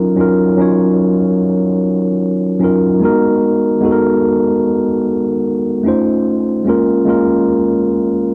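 A home cassette recording with light reverb and a digital ambience gives this brief slice of a longer piece a soft, intimate finish. It is a moody, late-night R&B passage in Eb minor at 74 BPM in 4/4, with a gentle 16th-note swing. A mellow tine electric piano plays alone from 0.0 to 8.3 seconds, sitting clean, direct and up front between Gb3 and Db5. Its sound carries the grain of cassette tape and the haze of tape echo. The harmony moves from Ebm9 to Abm7 at 3.0 seconds, then through F7b13 to Bbm7 near the close.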